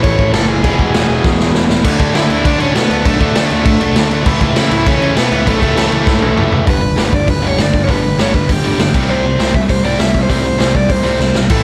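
A raw, gritty garage drum kit sits up front in this fast, energetic punk rock excerpt at 199 BPM, its punchy kick, medium-tuned snare, hi-hat, crash cymbal and toms saturated, with a rolled-off top and short fills closing each section. A bright overdriven electric guitar carries the melody over a compressed overdriven guitar riff, while a third, very quiet overdriven guitar plays its own low riff in and out, first stopping at 1.9 s and returning at 4.2 s. A fuzzy, overdriven picked bass sits in the background, and the dry, upbeat mix moves through chords such as A, E, D5, G and C5.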